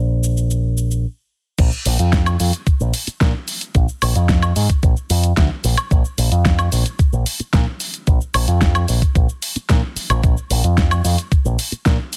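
Groovy and sunny, this nu-disco excerpt moves at 111 BPM in a straight 4/4, opening with a punchy picked electric bass run through an envelope filter and a layered pop drum kit whose fat snare, hats, cabasa, woodblock and crash carry a gritty overdriven edge. After a brief stop, the drop lands at 1.6 seconds as a thumpy, tape-colored electronic kick joins up front. The dry mix keeps the bass and kick close and forward.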